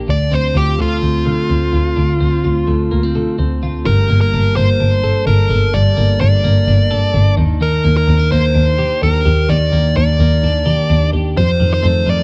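A straight 4/4 pulse carries this youthful, breezy jangly indie pop fragment, where a bright, twangy twelve-string electric guitar picks compressed arpeggios over a close, veiled double bass bowed with vibrato and a mute, while an overdriven lead guitar, dark and up front, sings the melody through chords moving from Dm7 to Gmadd9 at 3.9 seconds, then Ebmaj7 and F7, all set in a dark, warm studio reverb.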